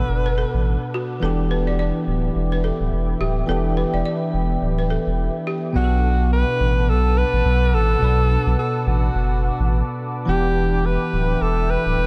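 Sultry and smooth, this afrobeats excerpt rides a swung 16th-note groove over a round, up-front sub bass, a bright, bell-like tine electric piano with analog chorus, and a deep, moody, detuned ambient pad that warbles through the harmony. A woody, buzzing balafon riff with analog delay fills the space from 0.3 to 5.6 seconds. The punchy, vibrato-laden alto saxophone, also with analog delay, offers a brief phrase at the opening and then takes the solo spotlight from 5.8 seconds, all set in a light, small-room ambience.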